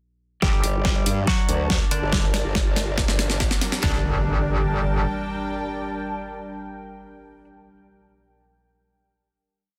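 A half-time 4/4 groove at 141 BPM drives this menacing, heavy wobble dubstep piece in G harmonic minor, where two overdriven dubstep drum kits, one with a punchy kick, deep snare and handclaps re-recorded in a small room and the other with bright hats up front, carry a drum fill through the build until about 3.8 seconds. A clean semi-hollow electric guitar plays a repeating riff in octaves through tape echo, joined by an evolving, detuned wavetable pad with phaser and reverb, a soft, breathy pad in the background, a formant-sweep wobble bass, and a riser and impact. A metallic, aggressive wobble bass returns at 3.8 seconds for the final chord, and the piece sits in a dense, heavily limited modern master with a faint mains hum.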